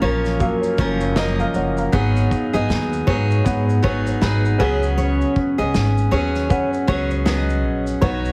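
Heartfelt and sunny, this short acoustic pop excerpt moves at 79 BPM in a swung 4/4 over F#maj7, G#m7 and C#7sus4, with a woody, thumpy pizzicato upright bass up front, an up-front picked steel-string acoustic guitar, a full-bodied fingerpicked steel-string guitar playing arpeggios, a mellow felt-muted upright piano with audible action noise, and a loose indie drum kit of punchy kick, snare and shaker entering at 0.3 seconds, all under light reverb and a heavily compressed radio sound.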